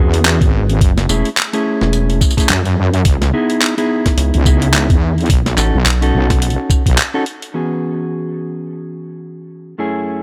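Set at 107 BPM in 4/4 with a 58% swing on the sixteenths, this glitch hop excerpt carries a gritty, playful mood over a chord path moving from E6 through F#m7, C#m9 and B7 before returning to E6. A compressed, pitched-down electronic kick gives a thumpy low pulse, while a sampler-style boom bap kit sits up front with handclaps, hi-hat, tambourine and a high-tuned snare. Two basses share the low end: a heavy, detuned wobble bass with chorus and overdrive, and a rubbery, hollow square bass with a resonant filter pluck and saturated, bouncy tone that appears between 1.1 and 6.1 seconds. A dark, clean, fingered electric guitar plays mellow stabs throughout, colored by sidechain pumping and dub echo. After a brief break at 7.0 seconds, the guitar alone carries the closing stretch to 10.2 seconds, all within a digital ambience.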